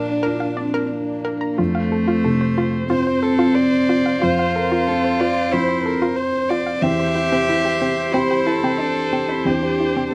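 A gently rubato pulse around 91 BPM in 4/4 carries this intimate, tender neoclassical fragment for piano and strings in F major, cut from a longer piece. Up front, a single violin sings the melody with a soft, airy sul tasto tone, pure and floating in a plate reverb, while a solo cello, rich and more distant, traces a second line beneath it. A dark, woody viola with vibrato and a felt-muted upright piano, mellow and thick-sounding with audible action noise, fill out the accompaniment. Behind the strings, a warbly, nostalgic tape-like pad holds lo-fi sustained chords with slow attack, chorus and its own reverb. From 0.2 seconds, a hollow, nasal square-wave pluck adds bouncy detuned arpeggios with chorus and slapback echo. The harmony moves from Bb to F, reaching C/E at 6.8 seconds, all set in a moderate studio room.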